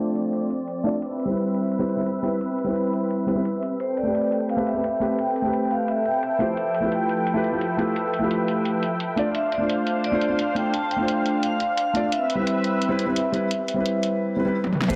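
Lush and melancholic, this liquid drum and bass excerpt moves at 173 BPM in a straight 4/4, cut from a longer piece and opening on a dark, mellow concert grand piano with dub echo alongside a smooth, detuned sawtooth pad treated with chorus, both sitting up front. The chords drift from Dm7 through Cmaj7, Am9 and Fmaj9#11 before circling back, while a filter sweep runs through nearly the whole passage. A pop drum kit enters at 0.2 seconds, its fat snare, warm hats, toms and crash overdriven and darkened by low-pass filtering, as if re-recorded in a small room. At 3.8 seconds a metallic, ringing vibraphone with medium hard mallets and its motor off takes the melody between C5 and A5, its boxy tone trailed by dub echo. A drum fill at 14.6 seconds leads into the final moments, where a round sine sub bass with tube saturation lands on A1 together with a very quiet, knocking electronic kick. 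A lush hall reverb bathes the mix, and the master is dense and heavily limited with a low-pass filter.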